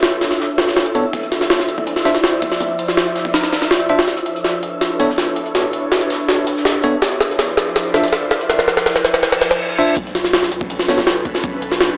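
An ethereal, detuned pad with ensemble chorus, a breathy wind-like noise texture in the background, and up-front, pitched-up sampler jungle drums with a thumpy kick and high-tuned snare, backed by a very quiet, saturated breakbeat kit, open this nostalgic, atmospheric drum and bass excerpt together, with bell-like electric piano stabs with dub echo entering at 0.9 seconds. A filter sweep on the pad and a drum fill build toward a reverse cymbal, and at 10.0 seconds the drop lands with a round, soft sub bass under the Bm9 chord. The whole has a gritty hardware character, with vinyl crackle, an AM radio tint and moderate plate reverb.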